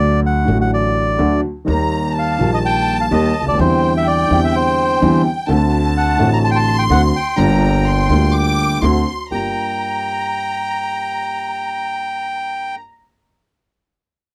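A rubato tango in 4/4 carries a tense, dramatic mood in this fragment of a longer piece, with a reedy, dark bandoneon singing the melody up front over an up-front concert grand piano whose deep bass anchors the accompaniment. A woody, thumpy pizzicato upright bass on gut strings underpins the harmony until 9.5 seconds, while a lush, bowed violin section with smooth vibrato adds a high second line from 1.7 seconds. The sound is dry and close, in the manner of a 1970s studio recording.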